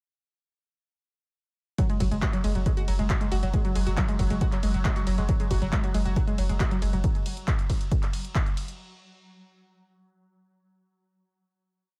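A four-on-the-floor techno pulse drives at 137 BPM, with a dry, punchy electronic kick up front from 1.8 seconds alongside a programmed analog drum machine's claps, hats and ride, while a saturated sine sub bass rumbles between the kicks, a round sawtooth pluck repeats a 5-step loop drifting against the bar over an F#sus2 chord, and a swarming, detuned granular drone hovers tensely in the background from 3.1 seconds, everything but the kick pumping and the whole mix echo-heavy in an intense, industrial peak-time drop.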